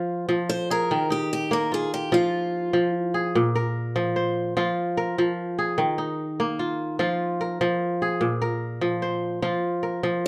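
West African traditional fragment in a flowing, hypnotic 12/8 pulse, where a crisp, ringing kora spins fingerpicked arpeggios up front throughout, a boxy parlour steel-string guitar picks a short melody from 0.5 to 2.9 seconds and returns at 10.3 seconds, all set in a small, dark-sounding room.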